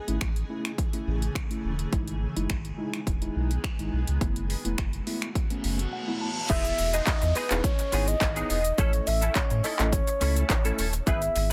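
Dance-pop in E major at 105 BPM, this upbeat, summery excerpt moves in a straight 4/4 over chords of A, Emaj7 and B7sus4. A punchy, overdriven house drum kit sits up front with kick, hi-hat, handclaps, finger snaps, shaker and crash, its snare softly clipped, alongside a deep sine-and-triangle sub bass doubled at the octave. A mellow tine electric piano carries the accompaniment throughout and plays a fill from 5.6 to 6.5 seconds, while a cloudy, granular pad holds blurred, detuned chords with its own reverb until 6.5 seconds, returning briefly at 11.1 seconds. The electric piano, bass and pad all breathe with sidechain pumping. A reverse cymbal and downlifter enter at 5.6 seconds, sweeping into the second half at 6.5 seconds and continuing until 11.1 seconds. From 6.5 seconds a round, octave-layered synth lead with chorus, vibrato and tape echo takes the melody, and a twangy, scooped clean electric guitar, recorded direct, adds a riff through ensemble chorus. 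The mix is dry, dense and heavily limited in a modern style.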